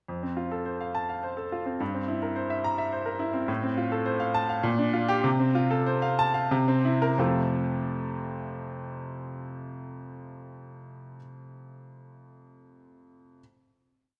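In a 3/4 with free rubato, this brief classical piano study moves between 88 and 108 BPM in F major, bright and sparkling in mood. A clear baby grand piano plays alone from 0.1 to 13.4 seconds, up front and intimate, with audible action noise adding a natural presence as sweeping arpeggios spread across a range from F2 to Bb5. The harmony travels from F through C7/G, F/A, Gm7/Bb and F/C to C7 before resolving home to F. The pace slows from 2.6 to 7.2 seconds, where a final chord arrives and rings until 11.2 seconds. A wet recital hall reverb surrounds the instrument, giving this complete little piece a brilliant, virtuosic sheen.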